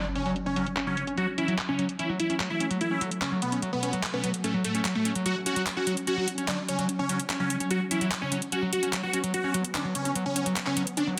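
Psychedelic trance with an intense, driving feel, cut from a longer piece, opening on an electronic impact as a huge, detuned supersaw lead carries the melody up front over a squelchy, gritty acid bass riff soaked in distortion and tape echo. A mellow, pulsing gated texture holds sustained chords in the background under chorus and a filter sweep, while a garage drum kit of handclaps and metallic, low-passed hats enters at 0.2 s. A plate reverb and a dense, heavily limited master frame the sound until a closing swell at 11.1 s.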